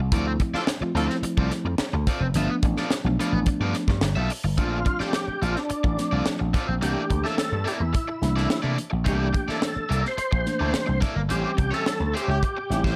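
Crunchy, bright overdriven guitar and a punchy, amped slap bass open this cool, hypnotic funk excerpt alongside a tight, small-room drum kit with a high-tuned snare and mellow tine electric piano stabs; a distant, roomy horn section adds brief, loose lines near the start and finish, and from 4.6 s a thick, gritty tonewheel organ with key click, chorus vibrato and slow rotary speaker carries the melody up front until a band accent lands at 11.3 s on an A7#9 chord.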